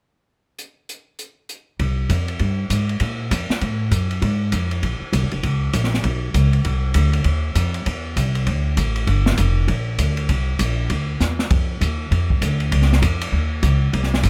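A dry sound frames this cool, smoky cut from a longer small-group swing and bop piece in C minor at 198 BPM, where an airy open jazz kit with dark cymbals, a medium-tuned snare and a boomy kick starts alone at 0.6 seconds, a woody pizzicato upright bass with steel strings joins up front at 1.8 seconds, and a drum fill stands out at 11.2 seconds.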